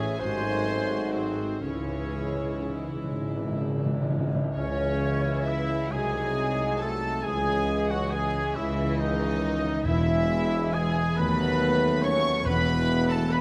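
Swaying in a lilting 6/8 with a flexible, rubato pulse, this slow romantic orchestral movement unfolds in a lyrical, warm mood, cut from a longer piece. A violin section carries the melody with a floating, sul tasto tone, while a second group of violins, a rich viola section and a quiet concert harp, thumb-plucked and ringing in arpeggios, fill in the inner texture. A bright, airy flute sings a second line from the start, a mellow clarinet adds a faint line until 3.1 s, and a soft oboe takes up another background line from 4.6 s. Mellow French horns and very quiet trombones hold sustained chords beneath clear trumpet stabs, while a dark double bass section, a cello section and a vintage-tinged tuba anchor the bass. Round, dry timpani with soft mallets play a fill from 1.6 s and return for the closing stretch, all set in a reverberant recital hall.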